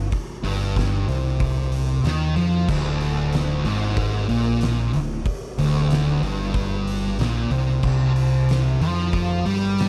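A thick, picked fuzz guitar opens this hypnotic, heavy stoner and doom metal passage, double-tracked and placed up front, with a growling fingered electric bass sounding from the start beneath it, direct and amped and overdriven. An oversized, low-tuned acoustic drum kit joins at 0.1 seconds, its punchy kick, fat snare, hi-hat and crash cymbal set in a bright stone room that pumps, with a saturated, gritty edge. The harmony moves from Eb69/G to Bb13/D at 2.7 seconds and settles on a bare C5 at 7.8 seconds. The bass growls in a lower register underneath. The dark, warm studio production keeps the fuzz thick and the low end heavy throughout this short section cut from a longer piece.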